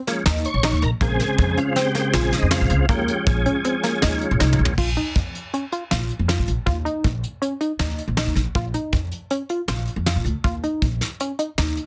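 Intricate and bright, this progressive instrumental band piece, cut from a longer work, moves in an uneven 5/4 with a straight feel. A smooth, clean tonewheel organ takes the opening solo, its sound shimmering through chorus vibrato and a fast rotary speaker over Eb7sus4 and Bbm7 harmony until it stops at 4.7 seconds. A tight, driving sequenced synth runs detuned sawtooth arpeggios with a plucked filter, mellow and lightly chorused, while a pizzicato upright bass with a woody tone and steel strings sits up front. The soft brush kit, recorded in a small room, pairs a fat snare and punchy kick with dark cymbals, and a drum fill at 4.4 seconds leads into a second section built on Bb5 and later Eb5. The mix is dry, dense and heavily limited, with a modern, close feel.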